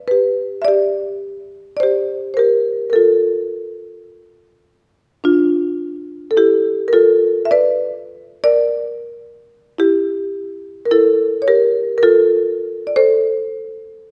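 This Hawaiian excerpt has a dreamy, sunny mood, with a relaxed swing on the eighth notes in four. A single marimba played with medium mallets carries the whole piece, its padauk bars giving a woody, full tone that sits in the middle register. The instrument is close-miked and up front, yet a moderate recital hall reverb gives it a sense of space. The opening moments touch on G before the harmony settles at 5.2 seconds into a gently shifting minor progression through Dmadd9, Bb, Edim and F. The marimba stops at 13.7 seconds, and the piece is clearly cut from a longer work.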